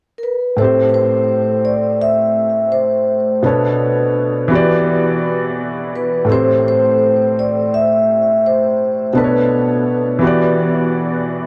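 Swung sixteenths in 4/4 give this nostalgic, reflective hip hop excerpt a loose, lazy lean. A vibraphone played with soft mallets and the motor off carries the melody from 0.2 seconds, its metallic, ringing tone trailed by delay, while a felt-muted upright piano enters at 0.6 seconds with an intimate, mellow accompaniment colored by cassette tape, its action noise audible up front. The whole mix is soaked in a huge ambient reverb that makes the cycling Am7, Bm9 and Em9 progression feel dreamy and suspended.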